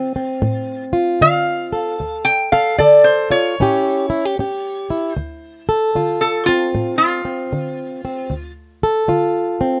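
Mournful and brooding, this short excerpt of acoustic country blues in D minor moves at 76 BPM in 4/4 with a swung feel, cut from a longer piece. A metallic, nasal lap resonator guitar, played with fingerpicks and a steel bar slide, carries the melody up front until 8.5 seconds. A fingerpicked, plugged-in swing-style acoustic guitar with old strings and a woody, boxy tone accompanies it through 9.8 seconds over Dm7 and A7, all captured by close, detailed microphones in light reverb.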